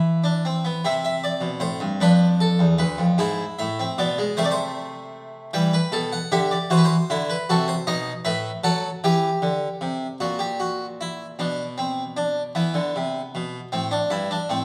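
In a straight 6/8 at 51 BPM counted in dotted quarters, this joyful, elegant baroque-style three-part fugue in A minor is played by a solo harpsichord, plucked, full-bodied and up front in a Flemish style with two sets of strings, ranging from D2 to G5 through a cadence into E minor near 9.0 seconds before a new passage begins at 10.2 seconds and closes on A minor at 13.7 seconds, all bathed in the wet reverb of a recital hall in this short cut from a longer piece.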